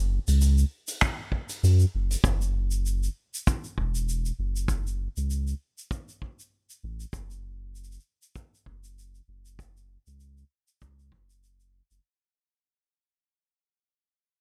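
A gently swung sixteenth-note groove in 4/4 drives this autumnal, wistful folktronica passage, cut from a longer piece and fading out across its full length. A deep, round sine sub bass sustains up front from the start, a soft brush kit of finger snaps, hi-hat and shaker enters at 0.3 seconds with a distant, roomy studio sound, and a tight acoustic kick joins at 1.0 seconds, sitting up front until 11.3 seconds.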